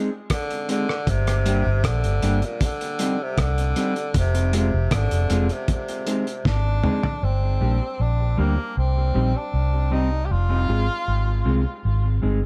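An echo-heavy mix in a small room carries this hypnotic, spacious dub reggae excerpt at 78 BPM in G phrygian, where a mellow, clean electric guitar and a distant, vibrato-laden tenor saxophone both trail tape echo over a cloth-damped, muffled, lo-fi drum kit with a fat snare that drops out after a fill ending at 7.2 seconds, while a dark, round, foam-muted fingered bass sits up front from 1.1 seconds through chords cycling Gm, Cm, Fm and Ab.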